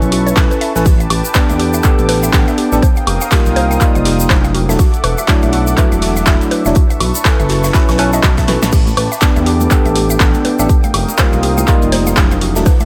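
Deep house at 122 BPM with a 59% swing on the sixteenths, this excerpt carries a smooth, deep mood over sustained ninth-suspended chords moving through B9sus4, A9sus4, F9sus4 and E9sus4. A punchy, up-front electronic kick anchors the groove alongside a dry, overdriven analog drum machine with crash, handclaps, hi-hat, snare and woodblock, while a very quiet gated 80s kit adds an airy snare and hi-hat from a bright stone room. A grainy egg shaker fills in the top, and ringing, high-tuned congas played with soft hands join at 8.9 s, just after a drum fill at 8.5 s. The gliding sawtooth-and-triangle synth bass sits prominently with portamento, vibrato and a wave-folded edge, pumping with sidechain compression. A clean tine electric piano plays chorused stabs through a combo amp with analog delay, a mellow detuned pad holds slow-attack chords underneath, and a woody, round FM pluck ripples arpeggios in the background, washed in diffuse ambient delay. 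Light reverb and a small room ambience tie the mix together.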